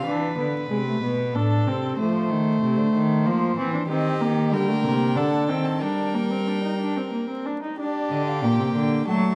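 An up-front, nasal, gut-strung viola carries the accompaniment in this stately, elegant excerpt of a baroque-style fugue for string quartet in 3/4, joined by a close, airy-bowed second violin, a reedy cello bass with light vibrato and a rich-toned first violin melody that sounds briefly at the start and returns at 3.9 seconds, each played period-style in a wet recital-hall reverb with dark, warm production and vinyl crackle.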